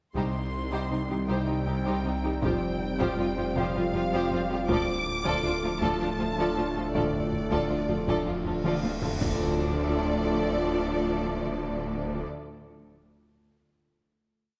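A tense, relentless hybrid orchestral and electronic film cue in D phrygian, moving at a slow 53 BPM in 6/8 as lush, vibrato-rich violins sing the melody over a second violin line and portamento violas driving a rhythmic ostinato, with a rich cello ostinato, a woody double bass section, and very quiet dark horns and trombones holding slow swelling chords. A swirling, saturated detuned saw bass with phaser drones beneath a warbling lo-fi tape pad and a soft harp-like synth pluck pulsing in arpeggios, while a band-limited taiko ensemble pounds a big background ostinato until about 9.4 seconds. A huge cymbal swell and drum fill at 8.6 seconds lead into a low impact and a final held chord, all bathed in a reverberant scoring-stage space.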